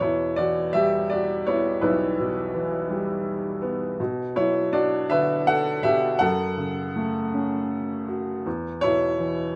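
A rubato 6/8 pulse moves at about 54 dotted-quarter beats per minute in this dark, reflective classical fragment for lyrical solo piano, set in E dorian with tuning at A4 = 444 Hz. An upright piano, woody and open with long sustain, sits up front and ranges from B1 to F#5 as the harmony passes from Emadd9 through Bm at 4.0 seconds and F#m at 6.2 seconds to a bare E5. Light reverb surrounds the 9.6-second passage, which is cut from a longer piece, and lossy compression artefacts colour the sound.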